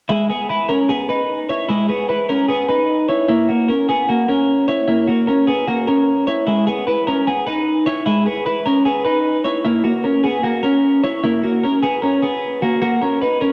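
A bright, twangy twelve-string electric guitar with lush chorus plays alone and up front for the whole of this restless, wistful indie pop excerpt at 151 BPM in C# dorian, moving through C#m7 and F#7 before touching Bmaj7 at 12.8 seconds, all set in a dreamy mix soaked in plate reverb.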